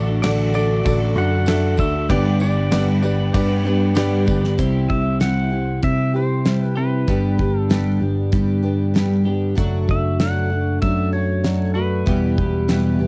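This warm, jangly cut of folk rock and heartland rock at 96 BPM in D major opens on a bright, shimmering picked twelve-string acoustic guitar up front, a clean, twangy twelve-string electric riff in the background, an amped picked electric bass and a clear baby grand piano, with a very quiet, reedy musette accordion holding sustained chords. The piano falls away at 4.4 seconds and the accordion around 4.6 seconds as the harmony shifts from D and G to C. A damped 70s drum kit with a fat snare, tight kick and dark cymbals drives the straight 4/4 feel, joined by a jingly tambourine that stops at 4.4 seconds, while a compressed pedal steel guitar, played with fingerpicks and slide, carries the melody in volume swells. The dry, homespun cassette sound keeps this fragment of a longer piece close and intimate.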